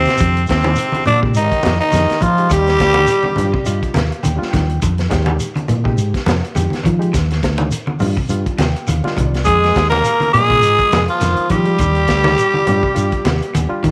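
A raspy, growling tenor saxophone leads this funky, intense afrobeat clip, sitting up front with light vibrato and a tape echo trailing its lines. Beside it, a buzzy trombone with a metal mute and a very quiet, mellow trombone section carry a second line in the background, and all three horns drop out at 3.6 seconds and return at 9.5 seconds. Underneath, a round, punchy fingered electric bass and a crunchy, saturated breakbeat kit with a tight kick and a rolled-off top drive the swung groove, while congas and a grainy shekere add texture further back. A barky, lightly overdriven reed electric piano comps through its built-in speakers and steps forward with fills, one of them starting at 8.3 seconds, as a faintly broken-up electric guitar picks quiet arpeggios. The harmony alternates between Fm9 and Ebmaj7, and the whole cut from a longer piece sits in a small room with light reverb.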